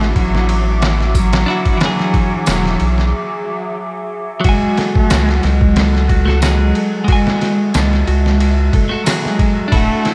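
A swung 91 BPM trip hop groove in F# minor rides on a muffled, pitched-down sampler-style drum kit with a thumpy kick and overdriven grit, up front beside a deep, round analog bass with tube saturation, while a tambourine joins in the background at 1.1 seconds. Over this brooding, smoky bed, a rich bowed cello sings a focused melody with vibrato and dub echo, as a bright, twangy clean electric guitar with tremolo and tape echo and a warbling, nostalgic lo-fi pad sit further back. A barely audible reversed, dreamy texture appears in a break at 3.1 seconds, and a ringing concert harp enters with arpeggios through analog delay at 4.4 seconds, all within an echo-heavy, lightly reverberant mix cut from a longer piece.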